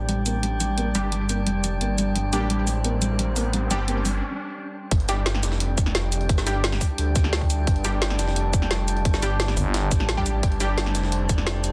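Tense and dark, this technical drum and bass excerpt opens with a felt-muted upright piano playing soft arpeggios through digital delay over a metallic, eerie FM drone, a deep ambient pad, bold nasal orchestra-hit-like synth stabs, a thick detuned saw bass and an up-front kit of woody snares and metallic hats, while an electronic riser climbs from 1.5 s to a brief break before the drop lands at 4.9 s with a tight up-front kick, a very quiet gritty jungle-style kit, and a short growling FM bass burst at 9.6 s.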